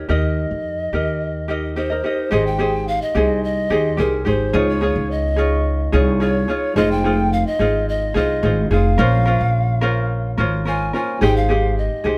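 A straight 4/4 pulse at 108 BPM carries this carefree, easy-going pop piece in Ab major, cut from a longer piece and played live by a band in a stone room with moderate reverb. Up front, a fingerpicked ukulele and a woody pizzicato upright bass set a light groove, while an airy pan flute with vibrato and a crisp, chiffy attack carries the mellow melody. At 2.3 s a very quiet, dark upright piano with short sustain joins as the chords move from Abmaj7 through Dbadd9, Fm7 and Bbmadd9.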